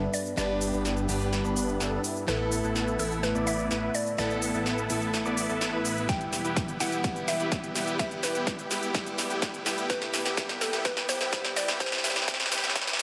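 Uplifting and anthemic, this festival progressive house build-up sets a huge, euphoric supersaw riff, pumping and filter-swept, over a woody, warbling FM mallet pluck melody, a picked plugged-in steel-string acoustic guitar with finger squeak, and a very quiet, airy pad of sustained chords. A thick, menacing detuned saw bass pumps underneath, while an up-front big-room kit with crisp hats, shaker and a punchy snare plays a drum fill throughout. A very quiet riser enters at 4.2 seconds and a tape-warm electronic kick joins at 6.1 seconds, all bathed in a lush hall reverb with dub echo on the pluck, guitar and lead.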